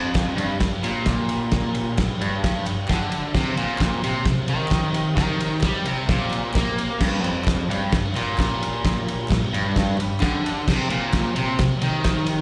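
Garage rock with a raw, rowdy edge, this live cut pairs a crunchy, bright, double-tracked guitar riff with slapback echo against a cloth-damped, thuddy drum kit with a fat snare and dark cymbals up front, while a mellow vintage combo organ holds lush chorused chords in the background and breaks into brief fills at 2.7 and 9.8 seconds, and very quiet, crisp group handclaps sit distant in the recital-hall reverb.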